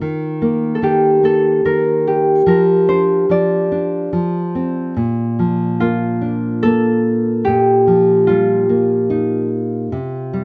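A concert harp sings a mellow, ringing melody up front while a dark, thumb-plucked nylon-string guitar with fresh strings supplies a deep classical accompaniment beneath it, both playing throughout this sleepy, innocent children's lullaby in Bb major at a rubato 73 BPM in 3/4, bathed in light reverb and cut from a longer piece.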